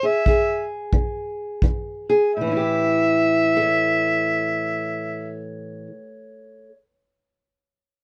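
An overdriven, gritty harmonica sits up front in this short cut from a longer acoustic country blues, playing a soulful, laid-back jazz-style solo with light vibrato, scooped notes and tongue slaps around E5 until 5.4 seconds. A dark, boxy fingerpicked parlour steel-string guitar carries the accompaniment across a swung 4/4 feel in A mixolydian at 81-94 BPM, easing from an E chord to A7 after an opening stretch that slows down. A punchy, smooth kick drum played with brushes appears briefly from 0.3 to 1.8 seconds, all captured with close, detailed microphones and light reverb.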